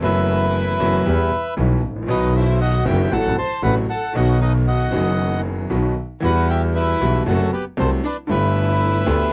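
A dark, reedy bandoneon carries the melody up front from the first second of this passionate, dramatic tango excerpt, moving at a rubato 116 BPM in 4/4 over chords that shift around E minor and B. Beside it, an intimate concert grand piano with audible action noise and deep bass plays accompaniment, while a single bowed double bass adds a biting, intense bass line with light vibrato. In the background, a bowed violin section with a gut-string, period-style tone and smooth top carries a second line, all captured in a dry, close 1970s-style studio sound.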